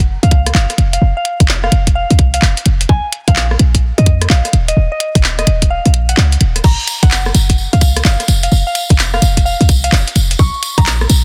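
Late-night and bouncy, this short two-step UK garage cut rides a swung 128 BPM groove, anchored by a tight, up-front electronic kick and a punchy, sine-based 808-style bass that pumps from sidechaining. A layered garage kit adds hi-hat, handclaps, rim clicks and crash cymbal, while a soft, pure FM synth bell carries the melody with chorus and dub echo over chords moving through Gb, F, Bb and Eb. The kick drops out between 5.7 and 6.6 seconds, and a jingly, distant tambourine enters at 6.6 seconds, all sitting in a digital ambience with a dense, heavily limited modern master.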